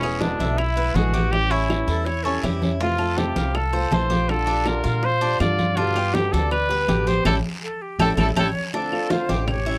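A punchy, vintage-sounding trumpet carries the sultry, danceable melody of this Cuban son and guajira cut in D minor at 162 BPM, with the trumpet's vibrato up front beside a thumpy, gut-strung upright bass. A fingerpicked flamenco guitar with audible finger squeak, the metallic double-strung arpeggios of a Cuban tres, and a background bed of round low bongos, distant bright congas, saturated woody claves and a raspy guiro fill out the groove. A breathy, expressive jazz flute slips in as a second line at 1.9 seconds and returns at 7.6 seconds, during a band accent that begins at 7.3 seconds, all within a dry, close 1970s-style studio sound touched by light reverb.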